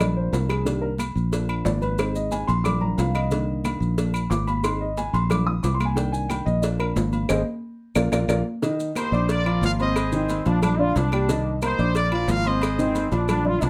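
A lightly reverberant, up-front mix opens this fiery, passionate salsa cut from a longer piece, moving at 180 BPM in a straight 4/4 over a Bb, Cm7 and Ab cycle. A dark, boxy upright piano solos for the first 8.6 seconds above a round, foam-muted fingered electric bass, while congas, a low-tuned cowbell, ringing agogo bells and timbales, woody claves and grainy maracas drive the percussion, and a band accent and drum fill arrive just before the new section. The tight, bright trumpet section enters with the melody at 9.0 seconds, bathed in plate reverb, and a brilliant, close-miked trombone section adds a second line from 10.1 seconds.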